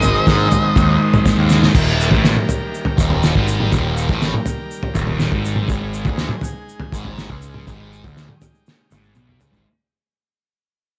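Driving straight 4/4 at 122 BPM, this hypnotic, kaleidoscopic psychedelic rock excerpt has cloth-damped, thuddy drums up front with a fat snare and dark cymbals, fuzz-soaked picked bass, a double-tracked thick fuzz guitar riff with phaser, a buzzy combo organ holding sustained chords in the background, and a grainy egg shaker, while a dark octave-fuzz lead guitar with tape echo sounds only until 1.3 seconds and the whole passage moves from Ab to Eb and fades out from 1.8 seconds.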